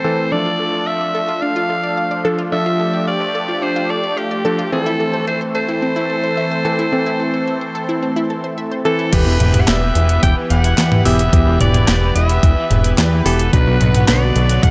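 Set in a light reverb, this moody, cinematic synthwave fragment moves at 109 BPM in a straight 4/4. A raspy, edgy alto saxophone carries the melody with a present sound from the start, its forceful pop-style line coloured by light vibrato and a tape echo. Beneath it, a lush, warbling unison pad holds sustained chords with chorus, while a clangy electric grand piano adds stabs from the background. From 0.3 seconds a bright, punchy unison pluck runs arpeggios over Dm and Am, roughened by vintage 12-bit sampler grit and trailed by delay. At 9.1 seconds the pluck drops away and the music settles into E minor: a fat, saturated analog bass and an overdriven, thumpy electronic kick push forward, joined by a 12-bit drum machine with a medium-tuned snare, handclaps, hi-hat, toms and crash, re-recorded in a small room. Far back in the mix, a raw garage guitar plays a picked, overdriven riff with analog chorus and delay as the chords move from Em to Bm.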